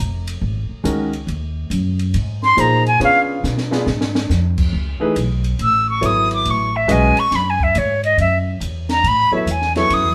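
Recorded live in one room with moderate studio reverb, this intense, hypnotic modal jazz excerpt swings at 139 BPM before settling into F# dorian, as a growly, woody pizzicato upright bass opens at 0.0 s, a dark, smooth compact cocktail drum kit with a punchy kick and high-tuned snare joins at 0.3 s and adds a fill at 3.4 s, a warm baby grand piano accompanies with short sustain, and an airy silver concert flute with vibrato and a soft attack takes the up-front melody from 2.4 s.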